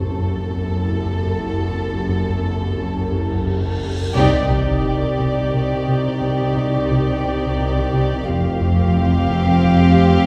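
An uneasy, tense suspense cue in 3/4 opens with a sul tasto violin section singing softly over dark, woody cellos, pure floating double basses, a rubbery square-wave bass riff and a swarming, detuned granular drone, until a huge, dark cymbal swell and sub drop at 3.5 seconds leads into a band accent at 4.1 seconds, where a second smooth-topped violin line and a background viola section join, all heard from further back in a reverberant scoring stage.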